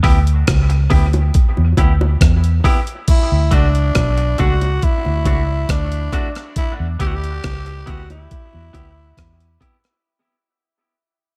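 This slow dub reggae excerpt in E dorian opens on a break, with a gritty, compressed sampler-style drum kit, thumpy kick up front, playing crash, hi-hat and rim click over a dark, foam-muted fingered bass that sits round and punchy beneath it. A clean, picked semi-hollow guitar adds hollow-bodied accompaniment treated with dub echo. Low-tuned bongos, played with soft hands, slip in at 0.5 seconds and stay in the background with their own echo. At 3.1 seconds a raspy, growling tenor saxophone takes the solo melody with light vibrato and a clear pop-style tone, its lines trailing echo as the chords move from Em to D and back to Em. The mix is dry of reverb but heavy with echo, giving a spacious, deep mood at 69 BPM as the piece fades out from 3.1 seconds onward.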